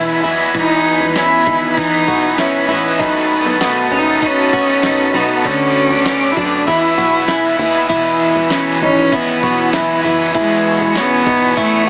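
Ethereal and blissful, this dream pop excerpt drifts along in a straight 4/4 feel, cut from a longer piece and colored by an AM radio sound under a moderate plate reverb. A rich, smooth cello carries the melody up front, played bowed by one close player with vibrato and trailed by tape echo. Beneath it, a cranked stack guitar adds bright, overdriven picked accompaniment shimmering with tremolo and lush chorus. A thick, warbling unison pad sustains full-bodied chords, while a dark, clean semi-hollow electric guitar spins fingered arpeggios through chorus and tape echo. A plucky, punchy analog bass sits mellow in the background, and a clean 12-bit drum machine enters at 0.5 seconds with a thumpy kick, fat snare and hi-hat. The harmony moves from E to B7 at 3.0 seconds, touches D6, and settles back on E.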